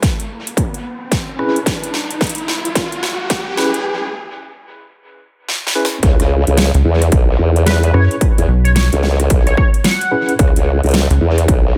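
Gritty, funky glitch hop at 110 BPM in C# minor pentatonic with swung 16ths, this excerpt opens on a build-up where a distorted electronic kick and a dubstep kit with a huge snare and metallic hats play under an up-front riser and worn, slightly out-of-tune tine electric piano stabs carrying tremolo, pumping and dub echo, then breaks at 3.8 seconds before dropping at 6.0 seconds into a wobbling formant-sweep bass, a rubbery, hollow square bass and, from 7.7 seconds, an edgy, tearing sync lead with chorus and vibrato, all in an echo-heavy mix with light reverb and digital ambience.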